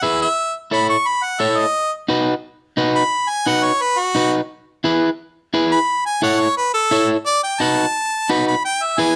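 A straight 4/4 pulse at 174 BPM carries this sunny, joyful Latin fragment, cut from a longer piece, as the chords move from A to B to E and back through A and B7 to E. A bright, punchy harmonica plays the solo melody throughout in a pop style with light vibrato, while a picked electric guitar, slightly broken-up, supplies the accompaniment, both placed up front. Close, detailed miking and light reverb give the pair an intimate sound.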